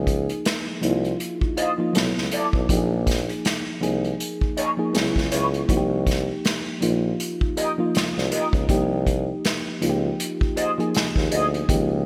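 A punchy tuba with light vibrato carries the bass under a mellow, warbling FM electric piano with chorus in this soulful, smooth neo-soul R&B excerpt at 80 BPM with a swung sixteenth feel, while an up-front acoustic drum kit played with bundle sticks keeps hi-hat, kick and medium-tuned snare, and a bright, twangy, slightly broken-up electric guitar with wah and tremolo enters at 1.6 seconds as a second line over chords moving from Dbmaj9 to Fm7/C, set in a lush hall reverb with 1980s-style digital production.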